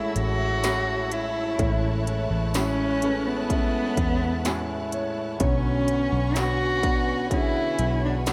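A dark, woody solo cello carries the melody up front with vibrato and a diffuse ambient delay in this tender, heartfelt pop ballad at 63 BPM in A major, moving from Amaj7 to Bmadd9 in a short cut from a longer piece. A concert grand piano with deep bass and long sustain accompanies and plays a fill from 4.0 to 5.4 seconds, alongside a bright, intense violin section and a lush, soft-attack string section in the background, a very quiet fingerpicked jumbo acoustic guitar playing arpeggios, and a round, foam-muted electric bass. An electronic drum kit with a distorted kick, clanging snare and smooth hats enters at 0.2 seconds and a jingly tambourine at 0.6 seconds, all set in a dreamy mix soaked in plate reverb.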